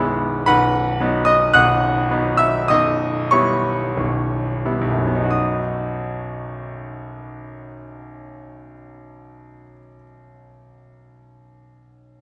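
Rubato in 2/4 and slowing through its first 5.3 seconds, this brief, passionate fragment of a romantic classical character piece features a solo concert grand piano with a brilliant, up-front tone and deep bass, spanning a B major chord, an E minor chord over B at 2.7 seconds and a return to B major at 5.3 seconds, all set in the wet reverb of a concert hall.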